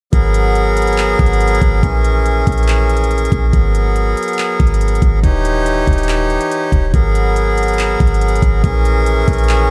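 A reedy, hollow accordion sits up front with a close-miked presence, holding sustained chords that pump against a sidechain while cycling through G#m9, A#m7b5 and D#7b9 in G# minor. This excerpt is melancholic, spacious atmospheric cloud-rap at 141 BPM in a half-time 4/4 feel, tuned to A4 = 435 Hz. A deep, boomy sine-toned 808 bass and an electronic trap kit with a knocking kick, crisp hi-hats and handclaps run throughout, all set in a dreamy mix soaked in lush hall reverb.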